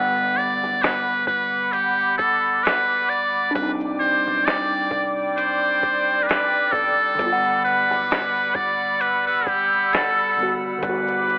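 Cosy and nostalgic, this swung lo-fi hip hop excerpt puts a buzzy, close-miked muted trumpet with light vibrato and scooped notes up front over a worn, slightly out-of-tune tine electric piano, an airy, flute-like chorused pad and a round, dark fingered bass in the background, while muffled, pitched-down sampler drums with a thumpy kick enter at 0.2 s, the chords moving from Gmaj7 to Cmadd9 and back as the whole mix sits in spring reverb, vinyl crackle and a telephone-like tone.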